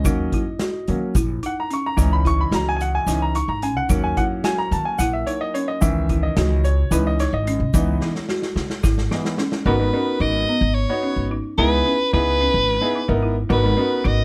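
Intricate and tense, this progressive instrumental moves in an uneven 7/8 at 219 BPM in C# dorian, with a clear, long-sustaining baby grand piano taking a solo over thumpy gut-string upright bass, rustic medium-hard-mallet marimba arpeggios, a grainy egg shaker and a boomy vintage drum kit with a pumping small-room sound. A drum fill at 8.0 seconds leads to the drums dropping out, and at 9.7 seconds an edgy soprano saxophone enters up front with vibrato, scooped notes and plate reverb, carrying the melody over chords shifting from D#m7 and C#madd9 to G#m7 and C#m7. The recording sits in light reverb, with the shaker kept in the background.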